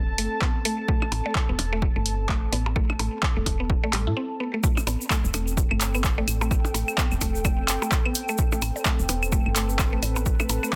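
A woody, dark FM bass and a warbling, nostalgic pad of detuned sawtooth and triangle tones open this hypnotic, quirky minimal techno excerpt in A minor at 128 BPM, with a 16th-note swing and an Am7 chord, soon joined by a bright, mallet-like FM pluck riff colored by chorus, cassette tape and digital delay, analog drum-machine handclaps and hi-hats, an up-front, punchy electronic kick, and produced blips and claves through tape echo, while the bass, pad and pluck pump against a sidechain, and after a brief break at 4.2 s the drop at 4.6 s brings in a grainy, close acoustic cabasa, all set in digital ambience under a dense, heavily limited modern master.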